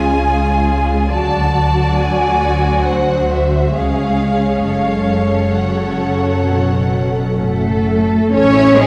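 Freely paced in rubato 4/4, this elegiac, solemn fragment of a slow romantic movement for string orchestra sets a smooth, even violin melody high above a lush, expressive second violin line and a viola accompaniment that slides between notes with portamento. Beneath them, a rich cello section sits distant in the background while the double basses stand up front, all five sections bowing with vibrato for the full 8.9 seconds. A concert hall reverb places the ensemble further back in the room, wrapping the lines in a long, resonant tail.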